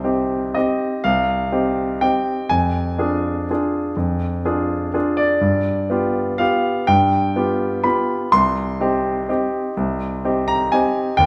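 In an uneven, rubato 3/4 lilt at 124 BPM, this nostalgic, wistful classical piano waltz in C minor, cut from a longer piece, features a solo concert grand with a clear, vintage tone, deep bass and short sustain, sitting up front in a wet recital-hall reverb as it moves from Cm through Ddim/F and G7 before returning to Cm at 8.3 seconds.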